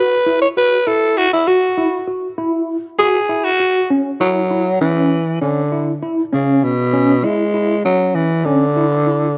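Straight eighths at 198 BPM in 5/8 drive this brooding, tense progressive instrumental, cut from a longer piece. Up front, a growling tenor saxophone carries the jazz-style melody, breathy and raspy with subtone, scooped notes and vibrato, while a clean tine electric piano with phaser plays arpeggios beneath it. The harmony moves from Esus2 to C#m at 3.9 seconds, all in a dry, close 1970s-style studio sound with light small-room reverb.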